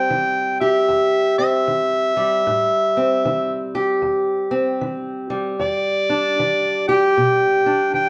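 Swinging at a slow 77 BPM in 4/4, this mournful, soulful acoustic country blues cut from a longer piece features a gritty, amplified harmonica up front taking a jazz-style solo full of tongue slaps and scooped notes over a dark, woody fingerpicked parlour steel-string guitar on old strings, moving from Am7 to Em7 at 5.6 seconds with the duo playing live in a large studio room.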